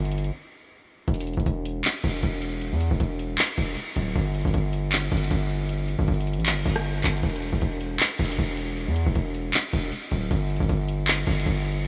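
Hard-hitting and menacing, this short hip hop excerpt sits in trap territory at 156 BPM in E minor, with a half-time feel that lets each hit land heavily. A distorted 808-style bass carries the low end from the start, reaching down to D1 and up to E2, its saturated sine tone layered with noise, fast in attack and decaying, aggressive and up front. The electronic trap drum kit comes in at 0.1 seconds with handclaps, rim clicks and metallic hi-hats, placed close and forward in the mix. A brief break occurs between 0.3 and 1.1 seconds before the groove carries on through to 11.9 seconds. A huge ambient reverb with a long 6.8-second tail soaks the mix, giving the dark, heavy material a dreamy, cavernous haze.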